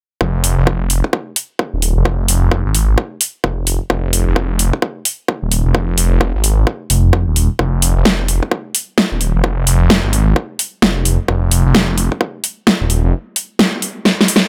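A dry, up-front mix carries this gritty, bouncy bass house excerpt at 130 BPM in F minor with a 16th-note swing, where a swirling, thick phased detuned saw bass with tube saturation and sidechain pumping sits between Eb1 and Ab1, a punchy layered electronic kick drum thumps from 0.2 seconds, and a big-room dance drum kit with a huge snare and metallic hi-hats runs until a drum fill closes it at 14.5 seconds.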